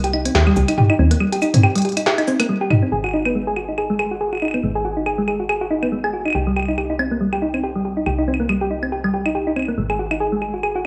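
IDM at 140 BPM with a light swing on the 16ths, this glitchy, cerebral excerpt moves between Cm and Ab7(no3) as a round, tine-like synth pluck with a mellow, chorused shimmer and digital delay spins arpeggios up front, over a soft, woody FM bass with a dark, tube-saturated body. An electronic industrial kit of clanging snare, crisp hi-hats, cabasa, claves and toms sits forward in a small room, and from 2.9 s a filter sweep reshapes the synth arpeggio. The whole mix carries the worn, warbly pitch drift of old cassette tape inside a moderate digital room reverb.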